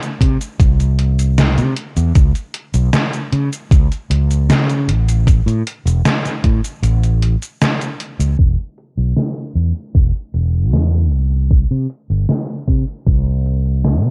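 A slow, straight 4/4 pulse at 77 BPM sets this faded, nostalgic vaporwave excerpt in motion, carried by a thumpy, overdriven electronic kick and a detuned 8-bit drum machine playing cabasa, hi-hat and a medium-tuned snare. The drum machine is gritty and sampler-like, its hats, percussion and snare muffled by low-pass filtering and framed by a gated reverb, and both drum parts sound re-recorded in a small room and sit up front. A warm, amped fretless electric bass moves through a range from E1 to C#3 and also sits up front in the mix. The kick drops out from 6.8 to 8.4 seconds, and at 8.4 seconds a new section begins as a filter sweep washes over the drum machine. The whole recording carries a dull cassette-tape haze with little reverb, lending it a dusty, half-remembered quality.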